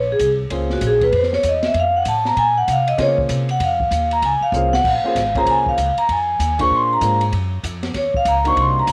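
Small-group swing and bop jazz with a cool, late-night mood, taken from a longer piece recorded at home on cassette with light studio reverb. An up-front vibraphone, played with medium hard mallets and the motor off, carries a ringing, metallic solo in a boxy small room, over woody, growly pizzicato upright bass, while a dark, mellow baby grand piano accompanies from 0.5 s. The acoustic drum kit, with its high-tuned snare and boomy kick, joins at 0.2 s on ride, hi-hat, crash, snare and kick and adds a brief fill at 4.5 s, and the vibraphone, piano and drums all carry a cassette tape colour.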